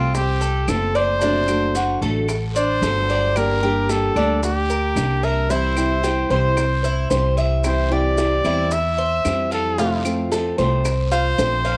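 A breathy, whispered trumpet opens at once with the melody, bright and intimate in a pop style with vibrato, heard over a fingerpicked steel-string acoustic guitar, a Cuban tres and a pizzicato upright bass. This danceable, warm piece of Cuban son in the guajira vein moves at 112 BPM in a straight 4/4 in F major, and it is cut from a longer piece. The tres spins metallic arpeggios on its double strings, some octave-doubled, while the dark, boxy guitar accompanies with audible finger squeak, both set in plate reverb. Up front, the woody, thumpy gut-string bass anchors the harmony as it passes from F through D7/F# and Gm to C, returning to F at 9.8 seconds. In the background sit tight, high-tuned bongos played with hard hands, a raspy, distant guiro and grainy, mellow maracas, with claves joining at 0.7 seconds. A small room ambience and the character of a home cassette recording with vinyl crackle give the whole an intimate, homespun sound.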